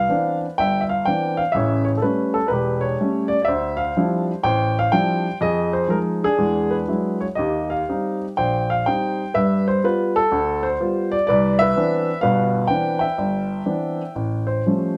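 A woody, intimate upright piano with audible action noise and long sustain sits up front in this sophisticated solo jazz passage, cut from a longer piece and played live in a room with moderate reverb, moving with a loose swing and rubato through rich chords such as Cmaj9, Dm11, Fm7 and Eb6 before landing on an A7alt at 14.1 seconds.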